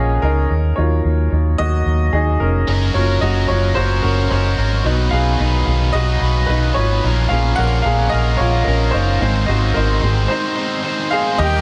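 Over a lightly swung 16th-note groove in 4/4, this anthemic, uplifting piano-driven pop fragment is led by a clear, woody upright piano with long sustain and analog delay, sitting up front beside a dark, round, punchy muted electric bass. A biting, overdriven, double-tracked guitar riff enters at 2.7 seconds with its own delay, and a lush, vibrato-rich violin section slips in at 11.4 seconds just as the cut ends. Light reverb and small-room ambience give the mix an echo-heavy feel.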